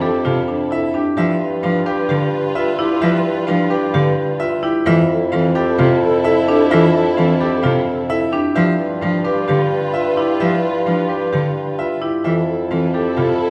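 Heard from further back in a large studio bathed in wet reverb, this propulsive, hypnotic excerpt of minimalist classical pattern music moves at 130 BPM in a straight 4/4, swaying between Fmaj9 and G7. A brilliant, short-sustained grand piano carries the melody over dark, percussive marimba arpeggios struck with hard mallets, while an airy, very quiet alto flute adds a soft-attacked second line and a distant, lush string section holds sustained chords. Underneath, a punchy solo bassoon plays the bass, and a focused, up-front bowed cello with vibrato accompanies from 0.3 to 13.3 seconds.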